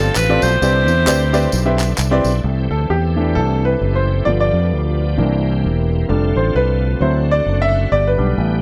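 Soulful and jubilant, this short cut from a longer uptempo gospel piece moves in 4/4 with a light swing. An edgy, punchy saxophone section with vibrato carries the melody up front until 2.0 seconds, while close, dry handclaps and tambourine add group energy before dropping away by 2.3 seconds. Throughout, a fingered electric bass sits amped and direct at the front, and a bright tonewheel organ shouts sustained chords through a slow rotary speaker, light overdrive, chorus vibrato and audible key click. At 2.4 seconds the clear concert grand piano, natural and deep in its low end, moves from accompaniment into a solo over changes that run from C6 through G7, C7, F6 and D7 before settling on G. A mellow French horn section enters there as well, holding classical-style chords with light vibrato in the background, all under a light reverb.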